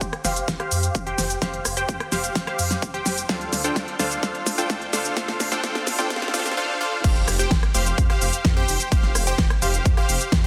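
A bright, detuned supersaw stab riff opens this euphoric festival progressive house excerpt, pumping against a punchy, up-front electronic kick, a thick chorused saw bass and a pop drum kit with a fat snare, crisp hats, rim click, shaker and crash. At 128 BPM in a straight 4/4 in F major, the opening seven seconds form a build-up: a drum fill runs until 6.6 seconds while a filter sweep works across the sawtooth stab. The harmony moves from Fsus2 to Dm7 at 3.3 seconds. The anthemic drop lands at 7.0 seconds, returning to Fsus2, with the filtered, tape-echoed stab and the mellow, tube-saturated bass both breathing with sidechain pumping. A lush hall reverb surrounds the mix, and the dense, heavily limited modern master keeps the whole excerpt loud and forward.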